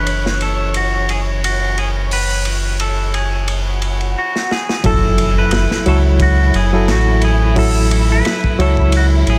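This smoky, cinematic trip hop fragment in F# minor opens at 88 BPM with a twangy, picked clean electric guitar carrying the melody through a tape echo. A reedy electric piano with fast tremolo fills in the accompaniment, while a lush, bowed violin section holds soft-attack chords with vibrato in the background. A round, deep analog bass sits up front, the loudest part, blending sawtooth and sine tones with a fast attack and sustained notes. A gritty, saturated breakbeat kit with a punchy kick, medium-tuned snare and dark cymbals plays over a lightly swung sixteenth feel, its top rolled off, with high-pass filtering across the kit and room. An electronic swell rises in the background from 3.7 seconds, a drum fill leads into the change at 4.8 seconds, and an impact sounds as the harmony moves from E7 over F# to F#m7, all wrapped in a small-room ambience.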